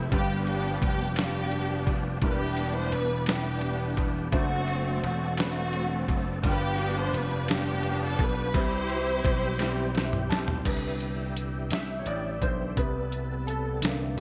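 Soulful and reverent, this slow gospel passage in 6/8 at 57 BPM, cut from a longer piece, sets an expressive bowed string section singing the melody with vibrato and portamento over natural-sounding grand piano accompaniment, a gritty overdriven tonewheel organ with key click and slow rotary speaker holding chords in the background, a growly, punchy slap bass, and a muffled, pitched-down sampler-style drum kit with thumpy kick and gated reverb, all in a bright 1980s-style digital production with plate reverb, where the strings drop out at 10.3 seconds and the piano takes a solo from 10.7 seconds after a shared drum and piano fill.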